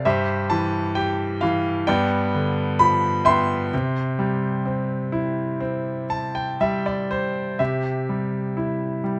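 Classical solo piano in a lyrical, calm and peaceful mood, moving at a gently rubato 58-67 BPM in 4/4 and set in C major. A bright grand piano carries the whole excerpt alone, spanning G2 to C6 with a brilliant, intimate tone, long sustain and audible action noise that places the listener close to the instrument. The harmony rests on C/G, moves to G7 at 1.9 seconds, and settles back on C at 3.7 seconds. A piano fill arrives at 5.6 seconds and carries the phrase into a brief new section at 7.6 seconds before the cut ends at 9.2 seconds. The instrument sits up front in a light reverb, giving the recording a close, clear and unhurried character.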